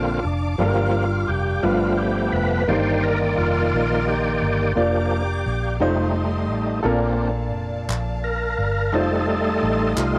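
Uplifting and jubilant, this slow gospel passage in 6/8 at 58 BPM sits in Bb major, where a gritty, overdriven tonewheel organ with key click, slow rotary speaker and chorus vibrato leads up front over clear, intimate grand piano with audible action noise, lush bowed strings, and a round, punchy, foam-muted electric bass colored by transformer saturation, while crisp group handclaps join at 7.9 seconds, all captured as a home cassette recording in a moderate studio reverb.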